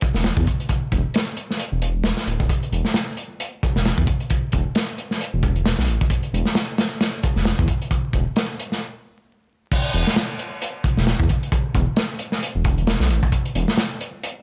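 Dry and dusted with vinyl crackle, this funky, energetic breakbeat excerpt at 133 BPM swings its 16ths over a gritty, up-front acoustic kit of tight kick, medium-tuned snare, hi-hat and dark crash cymbals, while a deep, rumbling detuned saw bass adds saturated weight beneath, until a stop at 8.8 seconds gives way to the drop at 9.7 seconds.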